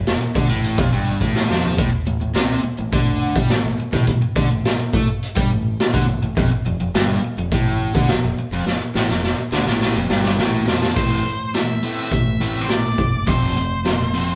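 A biting overdriven guitar with tremolo and a second overdriven guitar set back in the mix open this brooding, swaggering classic rock piece at 105 BPM in A minor, riffing over F69 and Am chords, while a growling fingered bass, bright and overdriven, sits underneath. A raw garage drum kit sits up front, saturated and gritty with a boomy kick, a medium-tuned snare and a rolled-off top, and it adds fills at 1.2 and 8.7 seconds as the band plays live in one room with light reverb. At 11.0 seconds a dark, distorted octave-fuzz lead guitar enters with a high melody before the clip ends.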